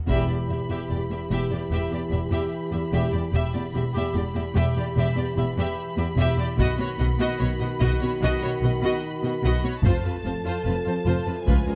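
A moderate scoring-stage reverb frames this relentless, epic orchestral film-score cut at 74 BPM, where lush vibrato violins carry a smooth melody over a rich second violin line, an even viola accompaniment, dark, distant French horn chords and a bowed bass of distant cellos and woody double basses, while compressed, saturated taiko drums played with heavy sticks sound at the opening and return from 6.6 s as the harmony moves from Em to B and F.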